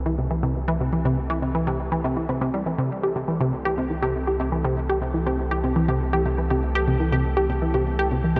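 Ambient, sequencer-driven space music in C major at 121 BPM, cosmic and expansive, where a tight, driving sequenced synth riff with detuned sawtooth plucks, chorus and tape echo sits up front from 0.1 s over a round sine sub bass and an airy, resonant pad in the background that fades in across the full 8.4 s on sustained chords, all bathed in a huge reverb with a dark production.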